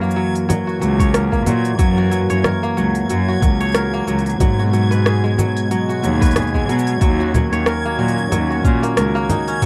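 Wistful and delicate, this folktronica excerpt sets ringing, crisp kora arpeggios with tape echo over a bowed, up-front cello bass with a soft attack and a warbling, detuned analog pad in the background, while an overdriven organic electronic kit of congas, smooth hi-hat, rim click and shaker is joined at 1.0 seconds by a soft, overdriven electronic kick, and a faint reversed, granular texture adds a bright, dreamy shimmer high above, all in a dry, close 1970s-style studio sound.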